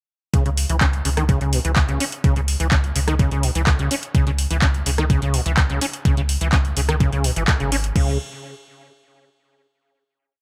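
A straight four-on-the-floor thump from an overdriven, up-front electronic kick drives this gritty acid house piece, while a booming analog drum machine adds metallic hats, claps, rim clicks and crash over a tape-warm backbeat, a squelchy, resonant sawtooth acid bass runs a 16-step line with accents, slides and a filter sweep through tube saturation, chorus and delay, and a deep, round sine sub bass pumps under sidechain in a dotted rhythm, set in light digital ambience until the groove gives way to a final note from 8.0 to 9.9 seconds.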